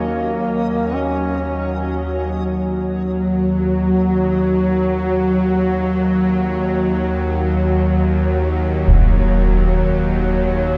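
This dark ambient drone in free time and E-flat minor, cut from a longer piece, feels cavernous and ominous: a mellow, folk-style solo duduk sings a brief vibrato line with scooped notes through diffuse delay until 1.8 seconds, while a reversed, granular, triangle-toned swelling texture glimmers in the background over a tense, detuned, sawtooth-edged bowed-like string drone that sits up front and sustains beneath a Dbsus2 over E-flat harmony, before a single low-passed acoustic concert bass drum hit lands at 8.9 seconds, all bathed in a dreamy, lush hall reverb.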